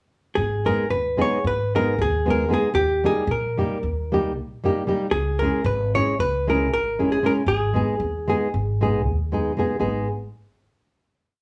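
A clean, compressed hollow-body jazz guitar sits up front with a dark, motif-based melody in period phrases, giving this short, complete Balkan wedding-band piece in 9/8 a bittersweet, virtuosic character. A thumb-plucked nylon-string guitar, full-bodied and deep, places off-beat triad chords through G#m, D# and C#m, while a woody, growly pizzicato upright bass thumps out roots and fifths on the main beats. The melody stops at 9.3 seconds, leaving the nylon-string guitar and bass to ring out a final chord in a small room's moderate ambience.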